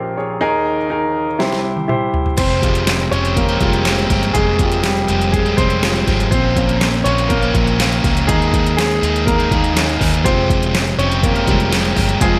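A moderate studio reverb surrounds this short cut from a longer piano-driven pop piece, with the clear, polished grand piano sitting up front and close enough that its action noise is audible. In F minor at 122 BPM in a straight 4/4, the mood is bittersweet yet driving; the piano plays accompaniment from the start, its notes ringing with long sustain, and it takes a solo from 2.4 seconds. An electronic deep house drum kit arrives at 1.4 seconds with a fill, layering a deep kick and snare, smooth hi-hats, handclaps, toms and crash cymbal, all re-recorded in a small room. At 2.4 seconds a crunchy overdriven guitar joins with a warm, picked riff placed forward in the mix, while a vintage fingered electric bass, foam-muted and dark with a round amped tone, holds the low end. The harmony moves from Ebsus4 and C into Fmadd9, then shifts to Bbm before returning through Ebsus4 to Fmadd9.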